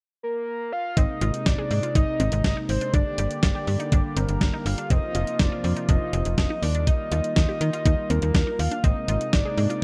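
A soft, round synth lead with a sub-octave layer and vibrato opens this wistful, bright synth-pop excerpt alone at 0.2 s, its melody carried on chorus and delay. At 1.0 s the full band enters: a thumpy, sampler-style drum machine with a fat snare and a snappy, metallic FM bass sit up front, while a smooth, warbling analog pad holds sustained chords beneath. A lush, detuned sawtooth pluck traces delayed arpeggios in the background as the harmony moves from Abadd9 through Gm, Bbsus2/F and Ebadd9 before returning to Abadd9.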